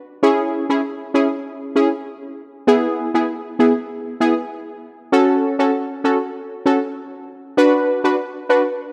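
A lone synth brass stab opens this hypnotic, sultry dancehall excerpt at 0.2 s, playing solo at a relaxed 98 BPM in straight 4/4 time. Its tone is bright and punchy, with a detuned sawtooth edge, a fast attack and a decaying filter pluck, all thickened by chorus and placed up front. Sitting between B3 and B4, the stab outlines a moody progression that moves from C#m to E, then F#m, and finally Bm. A lush hall reverb with a long 2.6-second tail bathes the part in space, giving the sparse arrangement a drifting, heady atmosphere. The rough home-demo mix lends it a raw, sketch-like quality, and the passage, cut from a longer piece, closes as the stab ends at 8.6 s.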